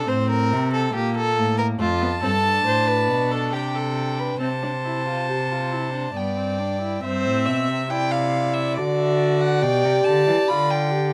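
Elegant and stately, this brief cut from a longer baroque-style fugue for string quartet moves at 69 BPM in a straight 3/4, centred on C major with tuning at A4 = 439 Hz. The second violin, viola and cello sound together from the first moment, the cello's bowed bass sitting up front while the viola fills the middle with a smooth-topped accompaniment. At 1.8 seconds the first violin enters with the melody high above, standing close and forward, its bowing airy and slightly nasal. The second violin carries a light vibrato in its gut-string tone, giving the inner line a reedy edge in period style. Harmonies pass through chords such as Dm/F, Gsus4/C and G before the second section opens at 7.0 seconds on C/G and moves through D to G/B. A moderate studio ambience and a dark production frame the four single players.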